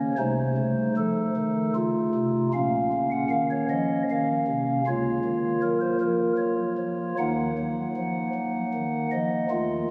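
Classical chorale-style fragment for solo pipe organ, grave and dark in mood, moving in a rubato triple metre through a brooding minor-key progression. The stopped flute stops sound soft, hollow and mellow, with audible chiff and a baroque voicing spanning deep bass to high treble, placed up front. A long, wet church reverb surrounds the organ, though the phone recording in the room also catches a club ambience.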